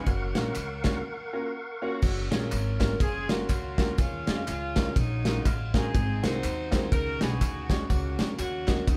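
An up-front modern studio drum kit with bright cymbals, a tight kick and a pumping room sound drives this hopeful, uplifting uptempo gospel excerpt at 123 BPM in a swung 4/4 in F# major, as a punchy, distant saxophone section with vibrato carries the melody, a tonewheel organ with key click, chorus vibrato and a slow rotary speaker holds sustained chords only through the opening 2.0 s (which include a brief break from 1.0 s), a woody, thumpy pizzicato upright bass anchors the low end, a clear, worn grand piano adds accompaniment from 0.3 s, and tambourine with group handclaps sits in the background, all captured as a band playing live in one room with moderate studio ambience.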